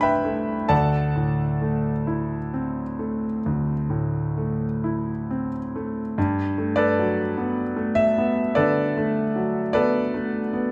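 A wet recital hall reverb surrounds an intimate, up-front concert grand piano, its deep bass and audible action noise giving the sound a close, natural presence. This serene, hazy impressionist solo piano excerpt unfolds slowly in free, rubato time, drifting from a C6/9 chord into Dsus2 at 0.7 seconds. At 6.2 seconds a new passage settles onto a Gmaj9 chord, and the fragment closes at 10.7 seconds.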